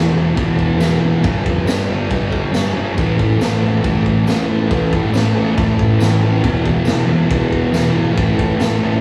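A rough rehearsal-room recording with a wet small-room reverb frames this gritty, swaggering garage rock excerpt at 138 BPM in 4/4, moving through E, G5, A5, E5 and back to A5. A thick, double-tracked fuzz guitar plays its distorted, picked riff up front from the start, while a bright, overdriven fingered electric bass with fuzz and tube saturation sits in the background. The raw acoustic drum kit enters at 0.4 s, saturated and up front, with a boomy kick, medium-tuned snare, crash cymbal and a pumping stone room, and a jingly, compressed tambourine joins in the background at 0.8 s.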